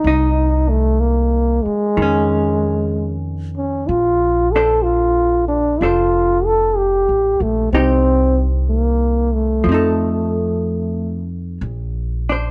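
Swung eighth notes in a slow 4/4 give this late-night jazz ballad an unhurried, intimate sway, with a breathy, close-miked trombone singing the mellow solo melody up front with vibrato. Beneath it, a dark, clean vintage hollow-body electric guitar picks compressed chords through a progression that settles from Cm onto Bbmaj9 and later resolves through F7 to Bbadd9, while a woody, thumpy pizzicato upright bass on gut strings sits close in the mix. The trombone drops out at 11.3 seconds, leaving guitar and bass to ring on in light reverb until this fragment of a longer piece is cut at 12.5 seconds.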